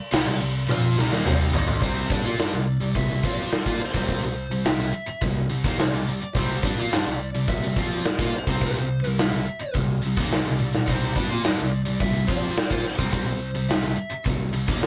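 Hard rock with an anthemic, powerful drive, cut from a longer piece, built on a high-gain distorted guitar riff alongside a bright, hollow-bodied overdriven semi-hollow guitar riff set in the background, over a growly, punchy picked bass. Up front, a gated 80s drum kit with a punchy kick and bright cymbals plays a fill from 0.7 to 1.8 seconds, and another fill lands at 10.6 seconds. A dark, smooth overdriven lead guitar melody enters at 1.3 seconds, all captured in a rough rehearsal-room recording with a moderate booth ambience.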